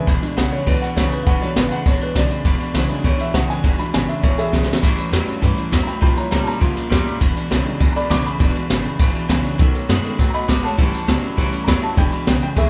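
A twangy, slightly broken-up electric guitar riff and a bright, full-bodied acoustic guitar in the background open this upbeat, rowdy rockabilly passage at 202 BPM in E mixolydian, joined almost at once by thumpy pizzicato upright bass, a punchy, up-front brushed drum kit with dark cymbals and a high-tuned snare that plays a fill at 4.5 seconds, and a dark, mellow upright piano soloing over the live-room band with light reverb as the chords move from E7 through A7, A#dim7 and B7 and back to E7.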